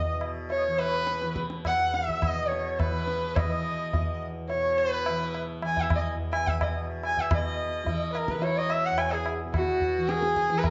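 A bowed sarangi, a pedal harmonium and a tanpura sound together from the very start of this Hindustani classical excerpt in E, set in raga yaman, with the tabla joining at 0.2 s. The mood is radiant and devotional, moving in 7/4 with a straight feel at 106 BPM and gradually speeding up throughout. Up front, the single sarangi carries the melody with a clear, focused tone, light vibrato and gliding portamento, its sympathetic strings ringing beneath each phrase. The harmonium plays a reedy, breathing second line in the background, while the tanpura's softly plucked, buzzing drone shimmers low underneath, and the low-tuned tabla gives short-ringing strokes with a small-room character. The passage shifts into a new section at 7.3 s, and a moderate recital-hall reverb and dark, warm production round off the sound, trimming the top end.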